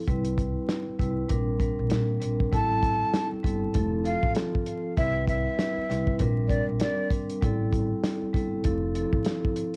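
Warm and confident, this boom-bap hip-hop excerpt rolls along at 98 BPM with a swung 16th-note feel, a dark, tight soul drum kit and a woody pizzicato upright bass grounding mellow, ringing soft-mallet vibraphone chords that cycle through Cmaj7, Bb69, Am7 and Fmaj7. At 2.5 seconds a breathy, reedy jazz flute enters with the melody, its vibrato and soft attack colored by tape echo, before dropping out at 7.1 seconds. The whole piece has a dry, close home-cassette character with a layer of vinyl crackle.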